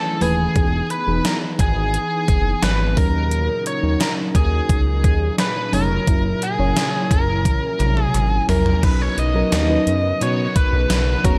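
Glossy and lightly reverberant, this nostalgic 1980s-style pop excerpt sets a biting, overdriven lead guitar melody up front over a mellow FM electric piano with chorus and phaser, a swirling analog pad in the background, a smooth gliding synth bass and a thumpy, gated digital drum machine, with a barely audible group handclap arriving at 4.0 seconds, a drum fill at 7.5 seconds, and a very quiet, crunchy double-tracked guitar entering at 8.8 seconds.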